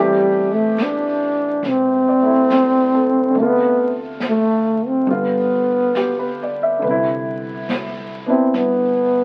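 A wistful, smoky jazz ballad at 70 BPM with a gentle swing, heard through the crackle of a very old 78 rpm record with light reverb. A breathy, mellow trombone carries the melody up front with light vibrato over a warm baby grand piano, while a woody, thumpy pizzicato upright bass sits in the background and a dark, smooth brush kit of snare and hi-hat joins at 0.8 seconds. The harmony moves from Am7 through Dm7 and G7 to Cmaj9 at 6.8 seconds, and this short cut from a longer piece stops at 9.2 seconds.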